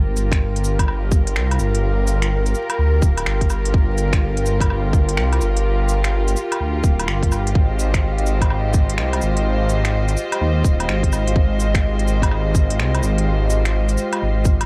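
Soft, floating bowed strings and a menacing, saturated bass built from detuned saw voices with an evolving filter swell open this rainy, nocturnal future garage excerpt in F minor at 126 BPM, both pumping against the kick and moving from Gm7 to Fm7 at 7.5 seconds. A tight, up-front electronic kick and a small-room kit of crisp hi-hat, cabasa, finger snaps and woodblock arrive almost at once with a 16th-note swing and a taped character. From 0.7 seconds a dark, breathy wind-like noise drifts in the reverberant background, all under a persistent bed of vinyl crackle.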